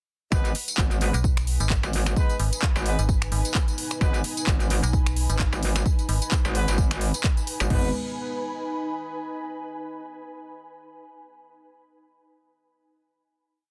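This gritty, bouncy bass house piece features a metallic, saturated wobble bass, joined by a digital FM bass with chopped phrases, an overdriven house kit of punchy four-on-the-floor kick, toms and crash plus bright hats, snaps, claps and tambourine, sparse distant horn stabs with dub echo, a deep, moody analog pad with phaser and 12-bit sampler grit, and an ethereal, airy pad that enters at 1.6 seconds and sustains into a final chord from 7.7 to 9.5 seconds, with sidechain pumping on the pads, horns and basses in a dense, heavily limited mix.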